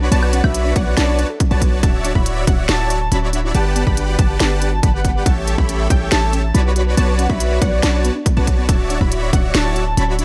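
Bright and euphoric, this future bass excerpt in a half-time feel pairs a huge, thick supersaw riff and a boomy, up-front 808-style bass, both pumping with sidechain, with a hard-clipped electronic kick and a trap kit of sharp snare, crisp hats and woodblock, while a breathy, warbling flute-like lead sings softly in the background over round, tine-like thumb-piano arpeggios with chorus and delay, a very quiet punchy unison pluck and a digital ambience, all moving through a progression of Bm9, Dmaj9, Gmaj9 and A7 before returning to Bm9 and Dmaj9.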